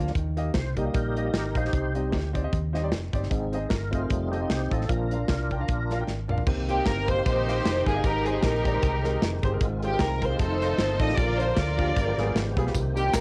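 Soulful and reverent, this uptempo gospel excerpt swings lightly, recorded at home on cassette with studio reverb around it. A tonewheel organ carries the opening 6.5 seconds as a solo, its full, lightly overdriven chords turning through a slow rotary speaker with chorus vibrato, while a clear concert grand piano with deep bass and short sustain plays accompaniment beneath. A hollow-body short-scale fingered electric bass gives a dark, round, amped low end with tube saturation, and a modern studio drum kit sits up front with a tight kick, medium-tuned snare, hi-hat, toms and crash, closing the first passage with a fill. At 6.7 seconds a bowed studio string section takes the melody, lush and focused with vibrato, as the harmony moves through Cm7, Abmaj7 and Fm7/Ab toward a G7b9. Tambourine and group handclaps, close and dry, slip in at 12.8 seconds just before the cut.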